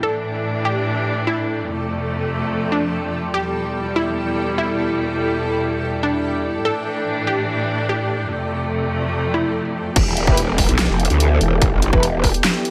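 Menacing and heavy, this heavy wobble dubstep excerpt moves at 145 BPM in a half-time 4/4 feel, set in E phrygian. For its first ten seconds a lush, detuned sawtooth pluck carries the melody through tape echo, over sustained chords from a rich, bowed studio string section that pumps under sidechain and sits behind a low-pass filter. A cloudy, evolving granular pad with slow attack and long release adds a blurred texture in its own reverb, while the harmony cycles through Asus4, F and Em. The drop lands at 10.0 seconds, bringing in a growling, aggressive wobble bass with chorus and overdrive, a distorted electronic kick, and a dubstep kit with a huge snare, bright hats, handclaps and crash cymbal in a small room ambience. Warm brass stabs with light vibrato sit in the background from 10.3 seconds, echoed on tape, as the section settles on Em.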